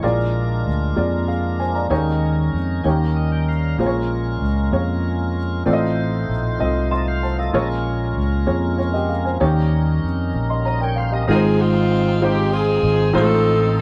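Soulful and jubilant, this short gospel passage in a straight 6/8 is cut from a longer piece and carried by a dark, mellow baby grand piano with audible action noise, a lightly overdriven tonewheel organ with key click and fast rotary speaker holding sustained chords, and a round, punchy fingered electric bass sitting up front. The organ adds a brief fill at 2.8 seconds as the harmony moves through dominant and minor seventh chords. At 11.3 seconds a tight saxophone section enters with a vibrato-rich, jazz-style melody, everything sounding like a band playing live together in one moderately reverberant room.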